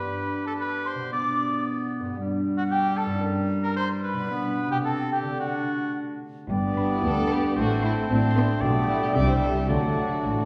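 Quirky and magical, this playful, whimsical film cue moves at 113 BPM in 2/4 in G major, opening with a ringing, up-front concert harp in arpeggios beneath a pure, mellow silver flute, a clear oboe and a soft-attacked clarinet weaving supporting lines. At 6.5 seconds the second section brings in veiled, con sordino strings, with lush violas in the accompaniment and dark cellos and double basses on the bass, while a roomy French horn section holds chords in the background. From 6.8 seconds muted violins add a very quiet melody and another supporting line, and this fragment of a longer piece sits further back in a reverberant scoring stage.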